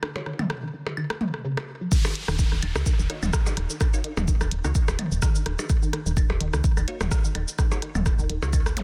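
A deep, up-front electronic kick lands with the drop at 1.9 seconds in this sparse, hypnotic minimal techno excerpt, where a round, woody FM bass pumps beneath a squelchy, resonant blip pluck riff with phaser and tape echo, two small-room click kits patter with clicky hats, rim clicks, claves, toms and blips, a muted dub chord stab drifts in the background through delay, and a downlifter and zap add electronic effects.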